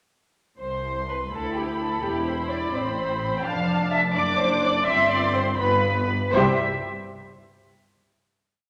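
A wet, reverberant scoring-stage sound frames this brief, cheerful and lively classical-period movement for string orchestra in C major, moving at 84 BPM in a straight 6/8, where a lush muted symphonic violin section carries the melody over an up-front muted violin second line, a veiled viola counter-melody entering at 1.3 s, a distant cello bass with passing notes and a double bass section doubling it, all bowed con sordino with a dark tone, before the harmony settles through a suspended G onto a final C chord at 6.3 s.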